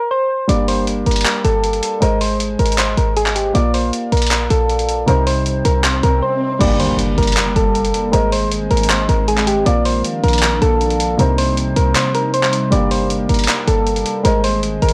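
Menacing and dark, this half-time trap excerpt at 157 BPM in G minor opens with soft, round electric-piano-like synth keys carrying the melody, touched with chorus and a filter sweep. A worn baby grand piano with long sustain, a punchy, tight 808-style bass and a compressed, dusty soul sampler-style drum kit of crash, handclaps and hi-hat soon follow, cycling through Gmadd9, Ab, Bb and Cm. An electronic swell and impact sits in the background from 5.5 to 8.1 seconds, and an ethereal, airy pad of detuned sustained chords enters at 7.3 seconds, all within a dry, gritty mix colored by transformer saturation and cassette tape.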